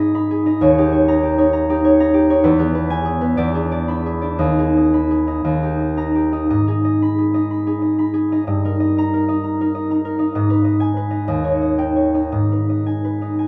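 Gentle and wistful, this short excerpt from a longer classical piece features a concert harp playing alone in G# minor. It moves in a rubato 6/8 at roughly 56-67 BPM, counted in dotted quarters, and its range stretches from D#2 up to B5. The harp is thumb-plucked, with a ringing, warm tone that sits up front, softened by a moderate studio reverb. The harmony circles around G#m, passing through D#7, E and E7 before returning home, then leans on D#/G near 8.5 seconds and settles back on G#m at 12.3 seconds. The harp plays throughout the full 13.5 seconds.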